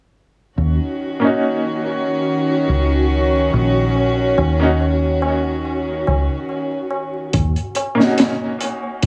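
An echo-heavy, lightly reverberant mix with small room ambience and a faint mains hum carries this hypnotic, melancholic trip hop excerpt at 71 BPM in Eb minor, where reedy, gut-string chamber strings hold sustained chords on Ebm7 over a round, foam-muted dub bass, a grainy, flickering granular texture hovers in the background, a woody, bright upright piano with audible action noise plays accompaniment through tremolo, tape echo and a filter sweep, low-tuned tabla with dub echo enters at 4.0 seconds, and a crunchy breakbeat kit with a punchy kick, high-tuned snare and 12-bit sampler grit arrives at 7.3 seconds.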